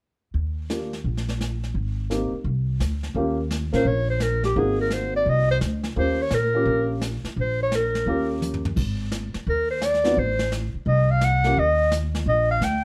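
Small-group swing and bop jazz with a playful, relaxed mood, this excerpt from a longer piece swings its eighth notes with an easy bounce. A woody, thumpy upright bass, plucked pizzicato on steel strings, sits up front from the start alongside a small-room brush kit with dark cymbals, a medium-tuned snare and a boomy kick. A mellow grand piano with a dark, short-sustained tone comps in the middle register, dropping out at 11.6 seconds. The clarinet enters at 3.7 seconds to carry the solo melody, present and up front with vibrato and a touch of plate reverb. The harmony moves through rich major sevenths and dominant chords, and a drum fill around 8.4 seconds adds a brief lift, all set in a moderate studio room.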